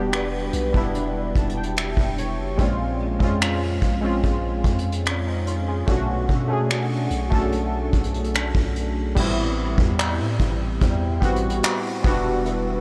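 Moody and late-night, this contemporary R&B passage, cut from a longer piece, moves at an unhurried, straight-feel pace in 4/4 through a dreamy mix soaked in a huge ambient reverb. Up front, round, warbling analog keys with a detuned sawtooth character and a filter sweep carry the accompaniment through a chorus effect, and a synth keys fill appears between 0.9 and 2.6 seconds. Beneath them, a deep, mellow 808-style bass holds long sine-toned notes with a fast attack that then decay, while a fingerpicked acoustic archtop guitar sits in the background with arpeggios, audible finger squeak, ensemble chorus and analog delay. A vintage brush drum kit, distant and roomy yet up front, with a punchy kick and a rolled-off top, mixes hi-hat, finger snaps, handclaps and crash cymbal. The harmony drifts from Em7 through Bbm7 and Bm7, then shifts to Am7 as a new section begins at 9.2 seconds before returning to Em7.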